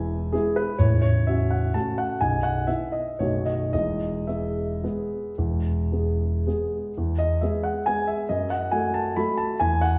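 A warm concert grand piano opens alone on an E major chord, unfolding an elegant, nostalgic classical waltz in 3/4 with a flexible rubato feel that moves between 108 and 142 BPM. The piano sits up front with a deep bass, spanning A0 to B5 as the harmony passes through F#m/A and B7 before settling back on E, then shifting into a new section at 7.0 seconds that reaches an F#m69 colour at 8.3 seconds. A wet recital hall reverb gives the sound a sense of space heard from further back in the room, and this 10-second passage is cut from a longer piece.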